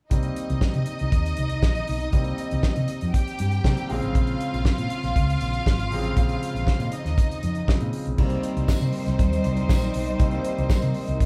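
Danceable and glamorous, this disco excerpt sets a dry, up-front 70s drum kit with a fat snare and tight kick beneath a round, hollow-body fingered electric bass, clear concert grand piano accompaniment and a lush, bowed string section with vibrato, played live together in a large studio room, before a distant French horn section enters with sustained chords at 8.2 s and a jingly tambourine joins in the background at 8.7 s.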